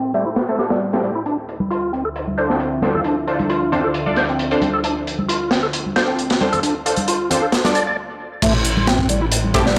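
A gritty, energetic breakbeat cut opens on a moody, detuned analog pad with chorus, phaser and sidechain pumping beneath a mellow, flute-like tonewheel organ riff with key click, fast rotary speaker and analog delay. Bold, punchy orchestra-hit-style synth stabs and a crunchy, saturated breakbeat kit with dark cymbals and a tight kick join them, and close, dry congas enter at 1.6 s. A filter sweep runs over the pad before a brief stop at 8.0 s and a drop at 8.4 s, where a thick, menacing detuned saw bass arrives.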